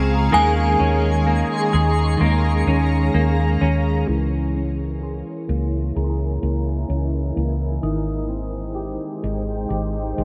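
A round, dark hollow-body electric bass sits up front in this dreamy, floating dream pop passage, cut from a longer piece, its fingered, amped tone anchoring the whole span. Around it, a clean semi-hollow electric guitar plays arpeggios softened by lush chorus, a low-pass filter and tape echo. A picked, compressed clean electric guitar with harmonic tremolo adds accompaniment until 4.6 seconds, while an inharmonic FM synth chime carries a mellow, ringing melody through ensemble chorus and echo until 8.7 seconds. Beneath, a cloudy granular pad holds blurred, evolving chords, and a faint twinkling texture with octave-up shimmer sparkles briefly in the background. A filter sweep runs through the second section from 4.1 seconds as the harmony moves from Eb7sus4 to Dbm6 and Abmaj7, all bathed in a huge ambient reverb.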